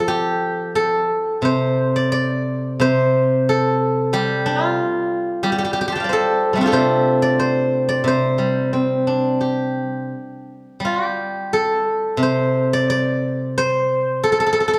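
Serene and flowing, this short cut from a longer Chinese traditional piece features a solo steel-string zither, played with fingerpicks and sitting up front with a bright, silvery ring across a span from C3 to C6, moving in free rubato through an opening passage before shifting to a new section at 10.8 seconds, all set in a moderate recital-hall reverb within a dark production.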